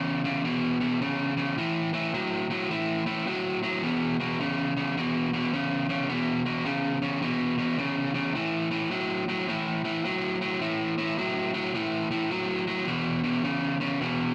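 A rough rehearsal-room recording with a moderate studio reverb carries this rollicking, soulful blues excerpt, cut from a longer piece at 106 BPM in 4/4 with a swung eighth-note feel. A lone electric guitar, overdriven, biting and picked, sits up front and plays alone throughout its 14.3 seconds, ranging from E2 to F#3. It moves between E5 and A5 power chords, reaching A5 at 1.6 seconds and settling back on E5 at 12.9 seconds.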